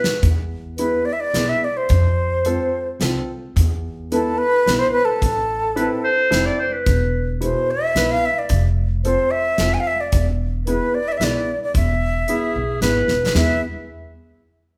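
Festive yet bittersweet, this klezmer excerpt in three-beat time steadily speeds up as an airy, slightly unsteady silver flute carries the tongued, vibrato-laden melody up front. A distant, classical-style clarinet adds brief second lines, notably from 5.8 seconds, over a dark, woody pizzicato upright bass and a mellow, vintage upright piano. A tight, polished, gated 80s drum kit with a medium-tuned snare opens with a fill and adds another at 13.1 seconds, all set in a wet large-studio reverb that sounds like the band playing live in one room.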